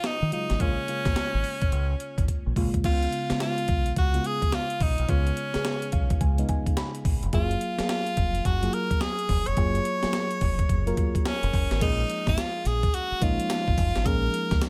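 New jack swing R&B at 107 BPM with a swung 16th-note feel, this confident, slick passage cut from a longer piece moves from Ebm11 and Bbm7 through Db7 and Gbmaj9 before returning to Bbm7. An edgy, forceful tenor saxophone carries the melody up front with vibrato, over a mellow FM electric piano treated with chorus and phaser that adds a fill from 5.6 to 7.3 seconds. A gritty, compressed sampler-style breakbeat kit with thumpy kick, snare, hi-hat, tambourine and crash sits up front and drops a fill at 2.3 seconds, while a deep, dark dub fingered bass enters at 0.2 seconds with a punchy tone, all set in a digital ambience.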